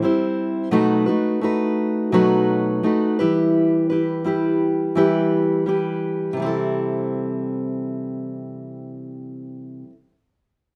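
A fingerpicked steel-string dreadnought guitar plays alone and up front in this sunny, easy-going pop excerpt at 85 BPM in C major, its dry outdoor tone carrying a slapback echo as the chords move from a rootless Am7 through B7 and Em before settling on C6 at 6.4 seconds.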